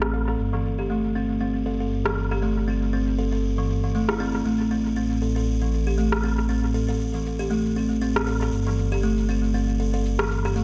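A dark, rumbling detuned saw bass and a tape-warm layered electronic rim click and cabasa, their percussion softened by low-pass filtering and dub echo, open this hypnotic 118 BPM afro house excerpt in A minor with a swung sixteenth feel, joined at 0.1 seconds by an up-front buzzing kalimba whose woody, ringing arpeggios move through analog delay and a filter sweep over a Gsus4 to Am to Am7 progression inside an echo-heavy mix with moderate spring reverb.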